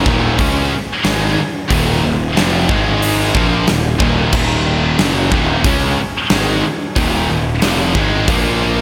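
A straight, driving 4/4 pulse anchors this aggressive hard rock excerpt, where a punchy, up-front arena drum kit with bright cymbals and a pumping room sound enters at 0.1 seconds beneath three riffing guitars sitting in the background (a double-tracked high-gain one with slapback echo, a second distorted one, and a hollow-body overdriven one with slapback echo) over a growly fuzz bass, moving through power chords and an Eb minor chord in a big arena space washed in lush hall reverb.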